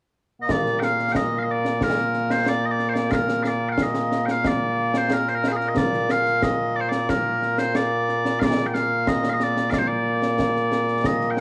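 Ceremonial and stirring, this short cut from a longer piece of Scottish traditional pipe music moves at 91 BPM in a straight 4/4 in Bb major, with loud, piercing bagpipes carrying a continuous solo melody up front from 0.4 seconds, ranging from Bb2 to G5. Concert snare and bass drum join at 0.5 seconds, acoustic and set in a small room, with bright cymbals. Both parts have a cassette tape character, and a moderate spring reverb gives the home recording a lingering tail.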